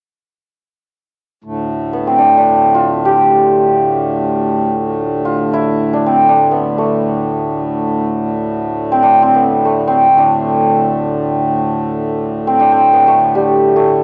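Introspective and meditative, this excerpt of Hindustani classical music in free time opens with a reedy, breathing pedal harmonium drone at 1.4 seconds, joined at 1.9 seconds by a bright, shimmering santur carrying the raga melody up front, both colored by cassette tape in a small, lightly reverberant home room.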